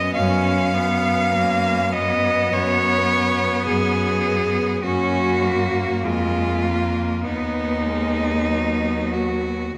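A rubato 4/4 pulse at 50 BPM carries this serene, lyrical classical fragment for four bowed cellos, each a single player with vibrato: a rich, close melody sits up front over a softly attacked second line with expressive portamento in the background, an even, distant accompaniment, and a clear, focused bass line also up front. The ensemble rings in a wet concert hall reverb of 2.3 seconds as the harmony moves from B5/F# to F# at 4.8 seconds and B/D# at 7.2 seconds.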